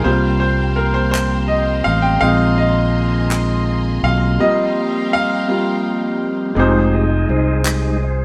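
Slow gospel in F minor at 55 BPM in 6/8, solemn and fervent, played live in a moderate stone room and cut from a longer piece, moving between C7sus4 and Bb9sus4 chords. A clear, intimate baby grand piano with audible action noise leads until 6.6 seconds, over a punchy, up-front fingered electric bass, crisp, dry group handclaps, and lush bowed studio strings with vibrato and portamento that stop at 6.5 seconds. A mellow, flute-like tonewheel organ with key click, third harmonic percussion and a fast rotary speaker holds chords throughout, then takes the solo as the harmony settles on Fm7.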